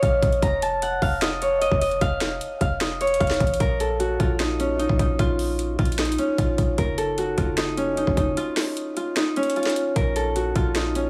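Trap drums roll in a half-time groove from the start, with a hard-clipped electronic kick, a sharp snare, metallic hi-hats and finger snaps sitting up front; the kick drops out between 8.4 and 10.0 seconds. A deep, boomy 808-style bass with a sine tone, a noise layer, a fast attack and a decaying tail anchors the low end, while a bright, ringing Celtic harp, fingerpicked and close, carries the melody over a minor-leaning progression. This hard-hitting, brooding hip hop cut has a dry studio sound with little reverb.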